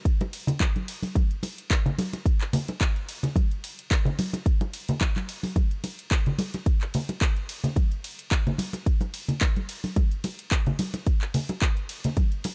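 A swung sixteenth-note groove at 109 BPM in 4/4 drives this short, groovy and sunny nu-disco fragment, with a punchy, layered electronic kick drum sitting up front throughout. A house drum kit adds handclaps, metallic hi-hats and ride cymbal, while bright acoustic congas, close and forward in the mix, join from 0.2 seconds. The dry sound carries little reverb.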